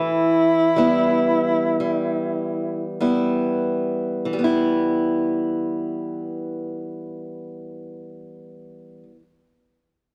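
A moderate recital-hall reverb surrounds this brief fragment of a longer Celtic slow air, giving it a longing, mournful air. An alto saxophone carries the melody in a classical style, its warm tone shaded with vibrato; it sits up front yet keeps a distant, roomy quality. It sounds only until 3.0 seconds. A picked acoustic archtop guitar supplies the accompaniment, also placed forward, with audible finger squeaks adding texture. The rubato feel slows through the opening passage, and a second section begins at 4.3 seconds, where the guitar continues alone until 9.2 seconds.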